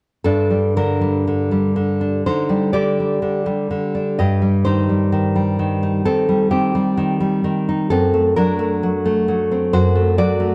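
Melancholic and passionate, this short excerpt from a longer romantic piece features a solo nylon-string guitar played with a free, rubato feel in 4/4. The fingerpicked guitar sounds full-bodied and deep, sitting up front in light reverb, and moves from Gm through Cm/G to D7/F# between 0.3 and 10.5 seconds.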